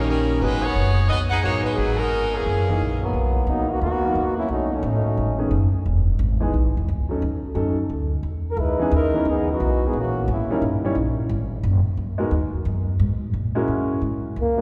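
Big band swing jazz with a dramatic, swinging mood, this excerpt moves at 176 BPM in 4/4, opening in G# minor before shifting to B major around 3.1 seconds. An edgy saxophone section carries the melody for the first 3 seconds with vibrato, sitting up front in a jazz ensemble style. A bright, close-miked trombone section then takes a second line with light vibrato, heard in two stretches, from 3.0 to 5.5 seconds and again from 8.5 to 10.9 seconds. Underneath throughout, a concert grand piano with deep bass comps the harmony while a woody, dark upright bass is plucked up front, moving through rich chords such as Bmaj7, C#m9 and D#7b9. A mellow solo trombone with scooped notes and vibrato appears briefly at the very end at 14.4 seconds, as the harmony drops away. The whole performance sits in a wet church reverb, giving it the spacious resonance of a large hall.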